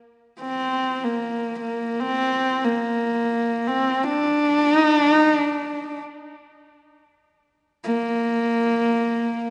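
In free time, this short fragment of traditional Mongolian folk music in a Bb gong mode, tuned to A4 = 438 Hz, carries a proud, galloping mood as a lone, up-front horsehead fiddle enters at 0.4 s and plays solo until 9.5 s, its husky, boxy bowed horsehair tone shaded with vibrato and portamento and trailed by tape echo, all set in a wet recital hall reverb with a rolled-off top end.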